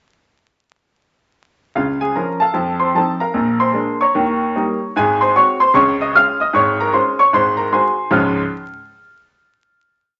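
Playful and swinging, this short stride piano piece moves at a brisk 151 BPM in 4/4 with a 63% swing on the eighth notes, set in D-flat major. A bright grand piano carries it as a solo from 1.8 s to 8.4 s, ranging from deep in the bass up to high in the treble. It plays a stride bass beneath a tune in filled octaves. The piano has a brilliant yet worn tone with short sustain, and it sits up front in the sound. The harmony travels through a chain of dominant sevenths, F7, Bb7, Eb7 and Ab7, back to D-flat, and closes on a final D-flat chord arriving at 8.1 s. A wet studio reverb surrounds the playing, and vinyl crackle with a dulled top end gives the recording an old-record character.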